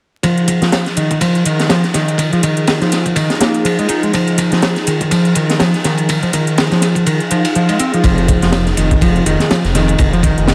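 Funky and gritty, this breakbeat excerpt at 123 BPM in F minor rides a swung, crunchy drum kit with a tight kick, high-tuned snare and dark cymbals, topped by a metallic electronic hi-hat, while an overdriven picked electric bass plays an up-front riff under a filter sweep and a swirling phased analog pad holds an Fm7 chord in the background with sidechain pumping. At 7.1 seconds the kick drops out, a background swell follows at 7.2 seconds, and at 8.0 seconds a thick, menacing detuned saw bass enters on a low F. Vinyl crackle and a moderate studio reverb lend the whole piece a dusty, lived-in sheen.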